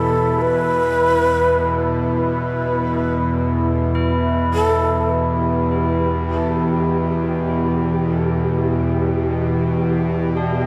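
A string-like, tense bowed drone sits up front through the whole 10.7 seconds, low and sustained with vibrato and ring-modulated bite, beneath a deep, moody pad of detuned chords washed in chorus in this dark, cavernous ambient piece in free time and E minor. A breathy, bamboo-toned shakuhachi plays a short melody through tape echo until 5.1 seconds, while solemn, metallic tubular bells ring arpeggios in the background from 4.0 seconds and a flickering, grainy granular texture enters at 5.4 seconds. Heavy echo and a wet spring reverb give the cut-off passage a cavern-like depth.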